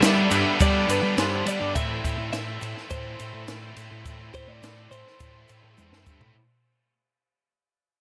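Restless and moody, this short indie rock fragment moves at 104 BPM in a straight 4/4, sitting in A minor as the harmony shifts from G to A minor, and the whole passage is fading out. A twangy, compressed twelve-string electric guitar carries the clean picked melody through a phaser until 5.7 seconds, while a buzzy vintage combo organ holds very quiet sustained chords with heavy vibrato. Two picked guitar riffs run throughout: a raw garage guitar, bright and overdriven in the background, and a scooped high-gain guitar thick with distortion and analog chorus. Up front, a round fuzz picked bass growls with overdrive, anchored by a dry, compact cocktail drum kit with a punchy kick, high-tuned snare, toms and dark ride cymbal. A grainy egg shaker adds texture in the background, light reverb and studio ambience frame the sound, and a drum fill closes the clip from 5.8 seconds.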